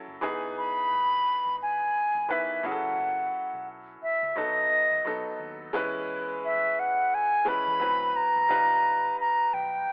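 Lush and smooth, this passage cut from a longer 1970s-style soul piece moves at 87 BPM in E major with a lightly swung 16th-note feel. A clear grand piano with short sustain carries the harmony from Emaj7 through F#m7 and B7, turning to E6, D13 and G7alt after 5.7 seconds. A dark, round, foam-muted electric bass sits in the background, while a pure concert flute with a crisp attack and straight tone carries the melody up front from 0.6 seconds, all bathed in a moderate plate reverb and a telephone-like sound.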